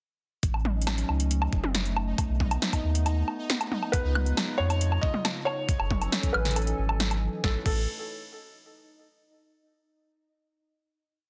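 A glitchy, intricate IDM piece at 137 BPM in A lydian, built on a broken, thumpy kick that sits up front with an ever-changing, glitched drum-machine beat of punchy snare, metallic hats, high tom, woodblock and crash, all overdriven. Beneath it a deep, round sub bass glides through long notes while a hollow, flute-like pad holds dark sustained chords moving from A6 through B7, C#9 and F#m9, and a bright, pulsing gated texture holds a high note in the background. At 3.9 seconds a felt-muted upright piano enters with an intimate motif in arch phrases, its action noise audible, before the groove settles on a final A6 chord at 7.4 seconds.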